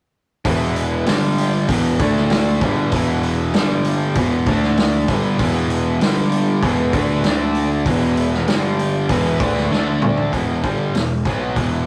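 Classic rock at 97 BPM with a sunny, confident mood, this short excerpt cut from a longer piece pairs a hollow-bodied overdriven semi-hollow guitar riff with a bright, cranked stack guitar riffing in the same range over a growly fuzz bass and an up-front vintage drum kit with a punchy kick and gritty, rolled-off top, while a very quiet tonewheel organ shouts sustained chords through a slow rotary speaker until 10.3 seconds, all moving between E and power chords on G, E and D, with a drum fill at 9.7 seconds leading into a brief closing section, in a rough rehearsal-room sound with moderate reverb.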